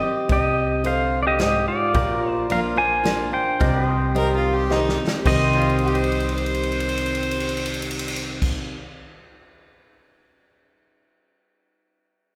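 Set in the lush, lingering reverb of a concert hall, this lonesome, dusty honky-tonk excerpt in C minor moves at 109 BPM in a straight 3/4 waltz over Cm, Bb and back to Cm, with an up-front, twangy pedal steel carrying the melody over a second pedal steel's sustained chords, a bright dreadnought acoustic guitar, a dark, very quiet upright piano, a woody, thumpy gut-string upright bass and a natural country drum kit with punchy kick and bright cymbals whose fills run from 4.7 to 5.3 seconds and again from 5.5 seconds, while a biting, airy fiddle joins with a second line at 4.2 seconds.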